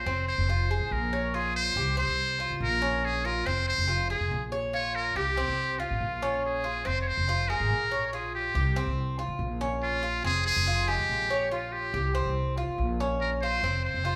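A buzzy, breathy muted trumpet carries a jazz-style solo melody with light vibrato and scooped notes over the metallic, octave-doubled arpeggios of a picked Cuban tres and a woody pizzicato upright bass in this sultry, danceable Cuban son and guajira excerpt at 142 BPM in F minor, played live in one room with a wet large-studio reverb as it cycles through Fm, Bbm7 and C5 changes.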